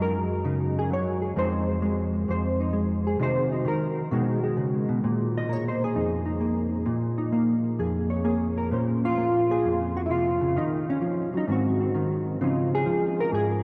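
Drenched in cathedral-sized reverb, the recording has a dreamy, floating sound with a long tail that hangs behind every note. It is a cool, swinging piece of solo jazz, cut from a longer performance, and a lone electric hollow-body guitar plays throughout, sitting up front in the mix. The guitar's tone is dark, clean and fingered, colored by analog chorus and analog delay, and the part ranges from F2 up to Eb5. Over the first 8.7 seconds it moves through lush changes such as Gb69, Fm7, Cdim and B69 before settling on Bbm7. A new passage then begins at 8.7 seconds with Bbm9, Ebm9 and Ab7, and the clip ends at 13.6 seconds on a Dbmaj9 chord.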